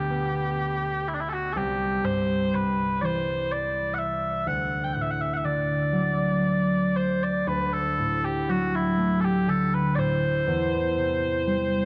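Celtic folk in the form of a slow air, this short excerpt cut from a longer piece unfolds at 61 BPM in 3/4 with a free, rubato feel in D mixolydian, tuned slightly low to A4 = 439 Hz. The mood is nostalgic and pastoral. Mellow small bagpipes carry the solo melody up front, their sweet, continuous tone shaded with vibrato as the line moves between D4 and G5. Concert harp accompanies throughout, thumb-plucked in the low register from C2 to B3, its acoustic strings ringing and sitting equally forward. The harmony moves from G/D to C at 1.6 seconds, settles on D at 4.5 seconds, and turns to C/E at 10.5 seconds, with a second section beginning at 7.5 seconds. A cathedral reverb with a long 4.5-second decay surrounds both parts, giving the dark production a spacious, hushed glow.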